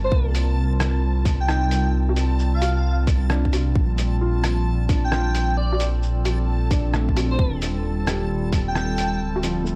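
Future garage with a rainy, ghostly mood and a swung sixteenth-note feel, where a deep, rumbling detuned saw bass sits up front under a tight electronic kick in a large room and a muffled, pitched-down sampler-style kit of hi-hat, rim click, shaker and woodblock, while a warbling, nostalgic pad with slow attack, a soft felt-muted upright piano with tape echo in the background, an airy, bright detuned lead with chorus, vibrato and analog delay, and a faint reversed, granular swelling texture drift over the gritty, vinyl-crackled sound.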